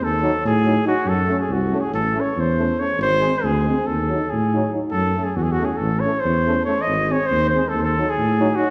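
A dark, lightly vibrato trumpet melody and a smooth-topped tuba bass open this fiery, virtuosic Balkan brass band passage in 9/8, joined at 0.2 seconds by a bright trombone and a mellow, soft-attacked euphonium sounding distant in the background, all in a classical style within a reverberant recital hall heard from further back, as the harmony cycles from D#dim through F#m, A and G#.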